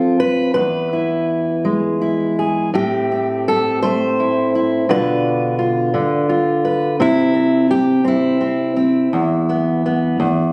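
Intimate and reflective, this brief folk passage features a single fingerpicked steel-string acoustic guitar, dark in tone and placed up front, moving in a loose, rubato 6/8 through chords from F and E to Am7 and Bdim before a bare moment at 7.0 seconds and a closing E5 at 9.1 seconds. The guitar ranges from E2 up to C5, and a moderate studio reverb gives it an auditorium-like space, while the sound was captured on a phone in the room and compressed. It is cut from a longer piece.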